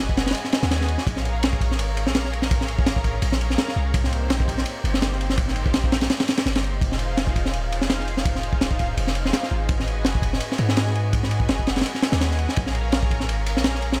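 Drum and bass with a jungle edge, this raw, frenetic 167 BPM cut in F minor swings its 16ths over gritty, saturated breakbeat drums with a punchy kick, high-tuned snare and dark ride cymbal up front, a deep, sine-toned 808-style bass holding long decaying notes, and a lush, nasal detuned sawtooth pad with chorus sustaining minor-seventh chords from Abm7 through Cm7 and Fm7, all set in studio reverb.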